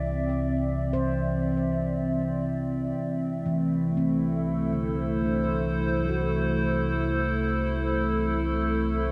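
In free time, this serene, luminous ambient piece rests on a single Am/C chord, tuned to A4 = 441 Hz and bathed in a huge, wet reverb. Up front, a warbling, nostalgic tape-like pad of detuned square and triangle waves holds sustained chords with chorus, over a deep, round sine sub bass and an evolving sawtooth and pulse-wave drone with chorus. In the background, a dark, ringing handpan of nitrided steel plays soft-fingertip arpeggios through delay, fading out from the very start.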